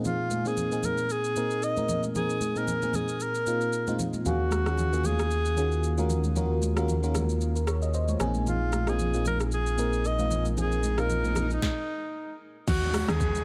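Hypnotic and deep, this amapiano excerpt moves at 114 BPM in Eb dorian with a swung 16th feel, as a lush, warbling FM electric piano with a soft pad layer, chorus and tremolo carries the chords alongside a breathy, whispered alto saxophone melody with tape echo, overdriven electronic drums with a soft kick, a sharp snare and crisp hats, and bright, high-tuned congas in the background. A thick, saturated sub bass enters at 4.3 seconds, and the electric piano plays a fill before the band stops at 11.6 seconds, leaving saxophone, drums and congas over a downlifter and swell. At 12.7 seconds a woody, punchy log drum bass lands on an Ebsus4 chord, all set in a digital ambience.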